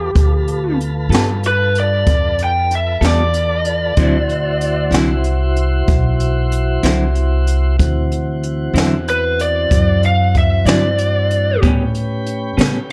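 A slow 12/8 blues with a straight, soulful and swaggering feel, cut from a longer piece: a jazz kit played with brushes, with a high-tuned snare and a boomy kick, joins at 0.2 s beside a woody, thumpy pizzicato upright bass that sits up front. A dark, lo-fi, overdriven lead guitar carries the melody until 11.6 s, while a tonewheel organ holds smooth sustained chords through a slow rotary speaker and a clean semi-hollow electric guitar adds tremolo-tinged accompaniment from 1.1 s. Light reverb and small-room ambience surround the harmony as it moves from G9 to D9 and then to A9.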